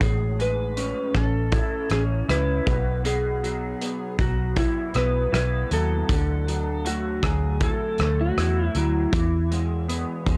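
Laid-back and hazy, this short bedroom-pop excerpt drifts at an unhurried straight pace, a bright, slightly broken-up slide guitar carrying the melody through subtle chorus and tape echo while a lo-fi electric guitar through a small old amp plays picked accompaniment, shimmering with analog chorus and vibrato. Underneath, a dark, round, foam-muted fingered bass with transformer saturation and a loose drum kit of punchy kick, hi-hat and rim click with a rolled-off top sit up front, moving through Amaj7, Bsus4, Dadd9 and E. The sound is dry and gritty, with the worn feel of cassette tape and very little reverb.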